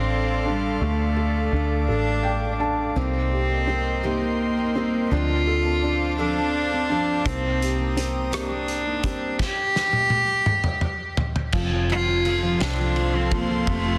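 A rich, bowed cello with a soft attack and a touch of digital delay carries the aching melody of this dramatic six-eight pop ballad at 56 BPM, over a mellow felt-muted upright piano with audible action noise, an airy, breathy chorused pad, and a round, dark, foam-muted electric bass up front. After a short felt piano fill, a full-bodied picked steel-string acoustic guitar slips into the background with arpeggios at 3.0 seconds. A loose indie kit joins at 7.3 seconds with dark cymbals, a punchy kick and a softly clipped snare, and plays a drum fill at 9.4 seconds, all within a small room ambience and a dense, heavily limited modern master.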